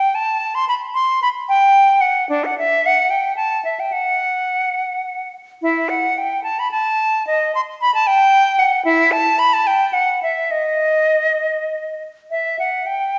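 A lingering recital-hall reverb, about 1.6 seconds long, surrounds this recording, and the listening position sits further back in the room. Within that resonant space, a single silver concert flute stands up front, its tone bright and airy with a crisp attack and a singing vibrato. It plays an unaccompanied baroque-style fantasia in 3/4, moving with a flexible rubato at roughly 99 to 115 BPM across a range from D4 to C6. The mood is introspective and solemn, with the lone line unfolding thoughtfully over about 13 seconds. The passage is an excerpt cut from a longer classical piece.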